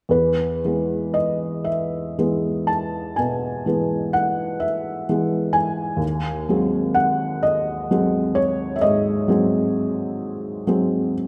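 A felt-muted upright piano sits up front in a wet recital hall, its reverb lingering for about 1.8 seconds, with the instrument's action noise clearly audible beneath the notes. This short excerpt from a longer romantic nocturne is tender and serene, unfolding in E major at a slow 38-44 BPM in dotted quarters, in a 12/8 metre shaped by rubato. The solo piano plays from 0.1 to 11.3 s, spanning D#2 to A5 with a mellow, intimate tone. The harmony rests on E before shifting to G#7/D# at 6.0 s. Tuned to A4 = 439 Hz, the instrument has a natural, soft character.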